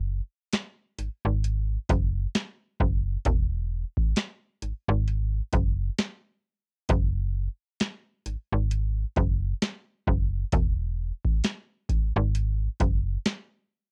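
A lightly swung 16th-note groove at 66 BPM drives this late-night, longing contemporary R&B fragment, cut from a longer piece, where a tape-warm, booming analog drum machine with a deep kick, tonal snare and metallic hats joins at 0.5 seconds just after a snappy, slap-like FM bass with a fast attack and decaying tone sits low in register, both up front in a dry, intimate home cassette recording.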